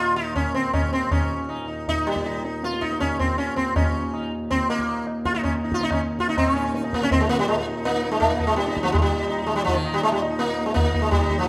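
Hindustani classical music in a meditative, devotional mood, set in raga khamaj over a seven-beat cycle that gradually speeds up across this short excerpt cut from a longer piece. A bright, buzzing sitar carries the melody up front, its sympathetic strings shimmering, while a reedy, breathing pedal harmonium holds a low drone beneath and a low-tuned, ringing tabla enters at 0.4 seconds, sitting close. The whole performance is bathed in the wet reverb of a recital hall, and the music moves into a second section at 6.4 seconds.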